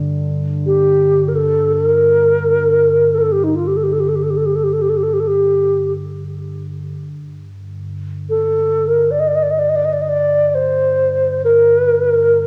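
A home cassette recording gives this short cut from a longer piece a soft tape grain, set in a wet studio reverb with a brief decay. It is spacious, meditative world music that floats unmetered, built from two parts. A deep, ominous drone sits low in the mix from the start, its rumbling, dark tone blending triangle and sawtooth colours with a slow attack, long release and its own built-in reverb. At 0.7 seconds a mellow, wooden-headed alto flute enters up front to carry the melody, airy and crisp in attack with vibrato and rolled-off highs. The flute also passes through plate reverb and analog delay, which lend it a hazy trail above the sustained drone until both parts end at 12.5 seconds.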